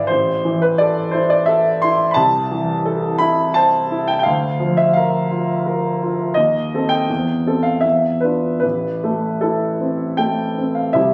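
Passionate and stormy, this romantic character piece for solo piano moves in a rubato 3/4 at 73-88 BPM in A minor, tuned to A4 = 442 Hz, and is cut from a longer work. A clear, open concert grand sits up front with a deep bass, ranging from G#1 to C6 and passing through Am/C, Bb/D and Am7b5/Eb before settling on Am at 8.6 seconds. A moderate large-studio reverb surrounds the instrument, captured on a phone in the room.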